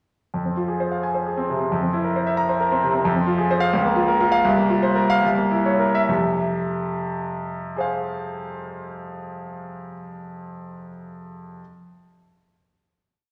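Rubato in 6/8, this short, complete classical virtuoso piano study in F minor moves between 68 and 90 BPM in dotted quarters, slowing from 2.4 to 6.1 seconds before settling on a final F minor chord at 6.1 seconds. A clear, polished grand piano plays alone, up front and present, spanning C2 to Bb5 in sweeping arpeggios over a stormy, passionate progression that moves through C7sus4 and C7b9. The piano sits in a wet scoring stage reverb with a 1.9-second decay, and the instrument is tuned to A4 = 444 Hz.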